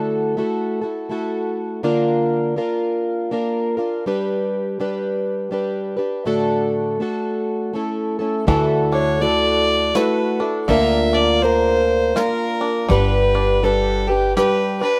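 A fingerpicked twelve-string acoustic guitar opens this gentle, pastoral folk excerpt alone, its shimmering, octave-doubled tone up front in a lilting, swung 3/4 at 81 BPM in D major, until at 8.5 seconds a twangy banjo in the background, a woody, growly upright bass and a soft brush drum kit join. Moments later an earthy, smooth bowed fiddle takes a solo over chords moving from Dadd9 through Bb/D to G, all in a lightly reverberant, rough home-demo sound.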